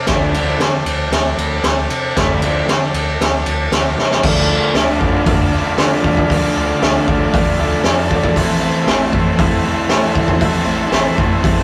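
Garage rock with a swaggering, raw attitude, this fragment of a longer piece moves at a straight, steady stride in 4/4. A crunchy, bright overdriven guitar riff sits up front, double-tracked and picked, while a growling fingered electric bass with overdrive digs in underneath from the very start. The raw garage drum kit is equally forward, with a high-tuned snare, a boomy kick, gritty saturation and a rolled-off top, working through hi-hat, ride and crash, and a drum fill lands at 4.0 seconds just before the music moves into a new section. A vintage, buzzy combo organ holds sustained chords in the background with light vibrato, stepping out for short fills that start at 3.2 and 7.3 seconds. The harmony rests on D minor before shifting to A minor at 8.3 seconds, and the whole performance has the rough feel of a rehearsal room, with a stony room reverb and saturated character.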